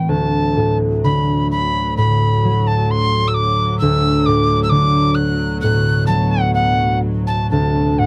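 A wooden whistle with a pure, crisp chiff and unsteady vibrato sings a haunting, mournful Celtic slow air over ringing, thumb-plucked concert harp and reedy, gut-toned bowed strings, drifting in rubato around 65 BPM through D, Bm7/D and D7 in this dry, close, 1970s-style studio recording tuned to A4 = 437 Hz and cut from a longer piece.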